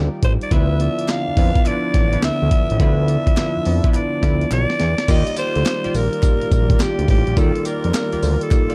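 R&B in a new jack swing style, this short, punchy and slick cut from a longer piece rides a swung sixteenth-note groove in a dark, dry production. A bell-like tine electric piano and a smooth analog pad with chorus open the track, the pad sitting in the background while a fat, saturated analog bass with a nasal sawtooth edge stands up front. At 0.2 seconds a compressed, sampler-style breakbeat kit arrives with a thumpy kick, medium-tuned snare, hi-hat, tambourine, claps and crash, alongside a raspy alto saxophone that carries the melody with vibrato in a clear pop style. A funky, warbling vintage polysynth with chorus and a filter sweep adds stabs from the background, and a very quiet, crisp group handclap joins the percussion. The harmony moves from Ebmaj9 to Dm69, and a drum fill from 4.5 seconds leads into a new section at 5.1 seconds, where Ebmaj9 returns.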